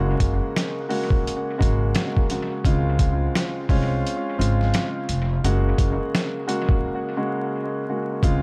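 A dark, mellow baby grand piano sits up front with long sustain, its chords of Gbadd9 and Dbmaj7 given a cassette-tape color, band-limited filtering and dub echo, in this nostalgic boom-bap hip-hop excerpt with a swung 4/4 feel. A woody pizzicato upright bass on steel strings anchors the low end. From 0.2 seconds, a gritty, pitched-down, sampler-style drum kit with a thumpy kick, medium-tuned snare and hi-hat, compressed, tape-warmed and treated with dub echo, drives the groove through to the end, with a break arriving at 6.8 seconds, all within an echo-heavy small-room mix dusted with vinyl crackle.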